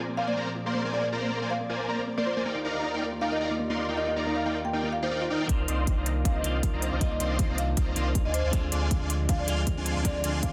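Riding a half-time 4/4 pulse at 158 BPM with a 55% swing on the sixteenths, this dreamy, bittersweet future bass cut in C minor opens with dark, sul tasto strings carrying 12-bit sampler grit, a punchy, ring-modulated pluck arpeggio in the background and a woody padauk marimba melody alongside huge, lush, detuned supersaw chords, all pumping to the sidechain, before a build-up and filter sweep at 5.5 seconds bring in clean picked electric guitar with tape echo, a thick, saturated sub bass, crisp hats and a hard-clipped kick up front, moving through Bb7, Ebmaj9, Cm11 and Dm7b5 in a dense, heavily limited mix with moderate room reverb.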